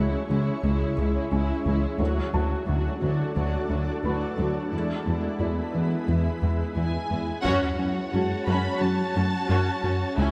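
Closely miked with light reverb, this brooding, futuristic excerpt of a hybrid orchestral and electronic film score builds over a shimmering, ethereal pad with chorus, a nasal, detuned synth bass riff, a dark, woody cello section, a lush viola section and a ringing, harp-like synth pluck playing arpeggios. A felt-muted upright piano adds mellow texture through delay, its action noise audible. Violins bring an expressive melody with vibrato at 6.8 seconds and a second line at 7.4 seconds, as the chords move from C#m through D and E to F#m, and the group lands an accent at 7.5 seconds with a taiko ensemble on heavy sticks sitting in the background.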